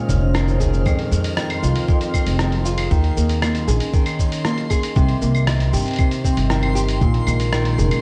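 A straight 4/4 groove from a muffled, pitched-down electronic kick and a compressed, lo-fi sampler-style kit of claves, hi-hat, rim click and shaker, both re-recorded in a large room, carries this intimate, delicate folktronica excerpt, with a woody, gut-strung upright bass plucked up front. Fingerpicked nylon-string guitar arpeggios, small and close with audible finger squeak and tape echo, move over minor-seventh and suspended chords, while a warbling, nostalgic tape-like pad with chorus holds sustained chords in the background. Higher still, a reversed, granular texture swells dreamily behind everything else, all within a dark, warm production with light reverb.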